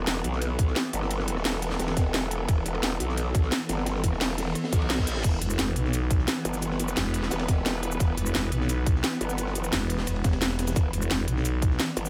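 A swarming, detuned drone and an aggressive, wobbling growl bass with chorus and overdrive open this futuristic, mechanical slice of dark technical drum and bass, both carrying sidechain pumping, as a tight electronic kick and an up-front electronic kit of cracking snare, crisp hats, cabasa, rim click and crash sit over a gritty, saturated acoustic breakbeat kit tucked in the background. A brief reverse cymbal sounds at 4.7 seconds, and a thick FM growl bass with tube saturation enters at 5.4 seconds. Light reverb surrounds the mix, with the drone's evolving, warbling grain hanging behind the drums.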